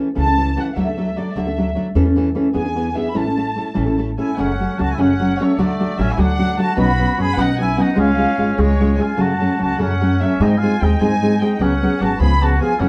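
A mariachi-flavored slice of Mexican folk music, romantic and festive, moves in a lilting 6/8 with a loose, rubato feel, drifting from a bright major opening into a minor turn at 4.4 seconds. A fingerpicked nylon-string guitar sits up front as the accompaniment, its classical tone carrying audible finger squeaks. A dark, lush violin section carries the melody from a slight distance, its bowed ensemble sound woody and rich with vibrato. Beneath them, a pizzicato upright bass with steel strings gives a growly low foundation. At 4.2 seconds a distant trumpet joins with a classical-style second line, roomy and touched with light vibrato. The whole band sounds as if playing live together in one room, bathed in a short, wet reverb, and the passage closes as a suspended dominant chord resolves into C#7, as it is cut from a longer piece.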